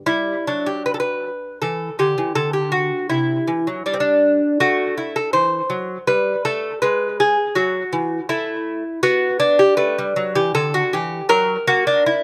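Classical baroque-style dance for solo lute in a rubato triple metre, serene and dance-like, its bright, delicate fingerpicked gut strings with octave-doubled courses sitting up front with a slapback echo in a dry outdoor setting, moving through chords such as G5, D7, Am, E/G#, Bm and F# across this 12.2-second cut from a longer piece.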